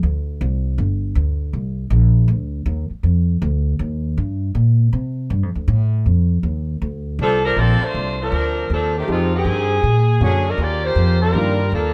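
Joyful and swinging, this short excerpt of big band swing jazz opens with an upright bass alone, its pizzicato lines woody and up front. The saxophone section joins at 7.2 seconds with a clear, soft-attacked melody carrying a light vibrato, sounding roomy as an ensemble. A grand piano slips in at 9.1 seconds, sitting in the background with a warm accompaniment. The harmony moves through rich extended chords such as Cm9, Bbmaj9 and Fm9 before reaching an altered Bb7 and resolving toward Ebmaj9. Light small-room reverb surrounds a rough home demo mix, and the passage is cut from a longer piece.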